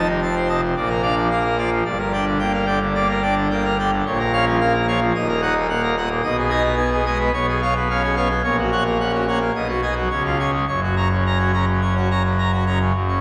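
A solo pipe organ on full registration, its bright mixtures ringing out, dominates this brilliant, majestic classical toccata passage in steady 4/4. The romantic voicing spans from a deep D#1 up to A#5, filling the space with a broad, commanding sound. The harmony moves from an opening dominant-seventh chord through a chain of minor and major chords, then settles on a firm major chord at 10.7 s. The organ sits up front in the mix, yet a long, wet church reverb of about 2.9 seconds frames it as if heard from further back in the room. This short passage, about 13 seconds long, is cut from a longer piece.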